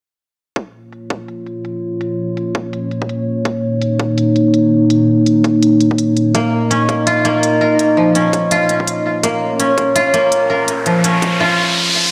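A deep, detuned analog pad holds a sustained B-flat minor chord under a filter sweep and sidechain pumping in this dark, spacious half-time drum and bass excerpt at 166 BPM with a swung feel, driven by a hard-clipped electronic kick and smooth, overdriven, low-pass-filtered hi-hats, while a woody, fingerpicked koto enters at 6.3 seconds with arpeggios roughened by 12-bit sampler grit and tape echo, and an up-front riser climbs in at 10.4 seconds, all bathed in a dreamy, lush hall reverb.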